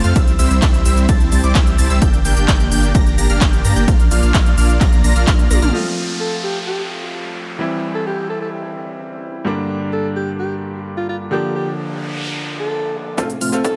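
A straight, driving pulse opens this triumphant, anthemic festival progressive house fragment, with a punchy, overdriven electronic kick and a big-room dance kit of crisp hats, handclaps, ride, shaker and toms, both re-recorded in a large room. The drop pairs a huge, thick, detuned supersaw riff, dense and compressed with a cassette-tape tint, against a deep, saturated sub bass and a lush, bright unison pluck tracing arpeggios through phaser and delay, all three pumping against the kick. A drum fill leads into a new section at 5.7 seconds, where the full beat falls away and a brilliant, slightly worn concert grand piano takes up the accompaniment, up front with audible action noise and long sustain. A breathy alto saxophone enters at 6.2 seconds with a jazz-style solo melody, scooped notes and vibrato, while a downlifter, noise sweep and riser sweep beneath it over a loop of major and minor chords. 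At 13.2 seconds the drums, bass, supersaw and pluck crash back in just as the fragment ends, all set in light digital ambience.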